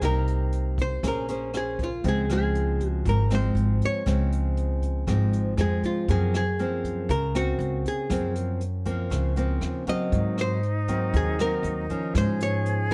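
A dark, clean archtop guitar carries the melody up front in this melancholic, intimate bossa nova excerpt, its picked hollow-body tone compressed and close. Beneath it, a fingerpicked nylon-string guitar supplies classical-style accompaniment, while a woody pizzicato upright bass with steel strings sits equally forward. A brushed drum kit of hi-hat, boomy kick and rim click sounds distant and roomy, its top rolled off as if set in a small room. At 10.1 seconds an airy silver concert flute joins with a tongued, expressive second line and vibrato, close-miked in its low register. The tempo is a straight 119 BPM in 4/4 in Db major, tuned slightly flat to A4 = 437 Hz, with little reverb and chords moving from Cm7 and Bbm9 through Dbmaj7 and Gbmaj9#11 to Ab9.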